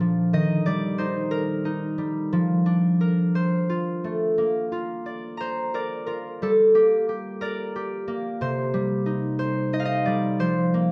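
A solo concert harp carries this short children's lullaby, its fingerpicked strings ringing out close and up front. The mood is sleepy and gentle, set in a lilting 6/8 with a loose, rubato feel that lets each phrase breathe. The harp spans from its low register up into its upper notes, moving through Eb, Bb/F and F in the opening passage before a second passage begins at 4.4 seconds on Bb and drifts through Gm and Cm. It comes to rest on an unresolved Fsus4 at 10.4 seconds, a reminder that this is a fragment cut from a longer piece. A moderate recital hall reverb surrounds the instrument, and the dark, warm production gives the whole recording a soft, hushed glow.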